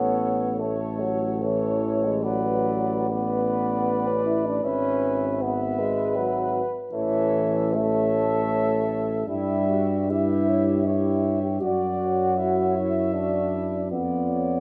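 A tender, hymn-like classical passage for brass band opens with every voice together: a mellow, close-miked flugelhorn carries the melody with light vibrato, while a vintage-toned French horn section sings a second line in the background. Underneath, a distant, roomy euphonium and a warm trombone section supply the accompaniment, and a present tuba sits up front on the bass. At 77 BPM in a rubato 3/4 in A major, the harmony drifts from A through E/G# and Em69/G to Dm/F by 13.9 seconds, all bathed in a moderate recital hall reverb in this short passage cut from a longer piece.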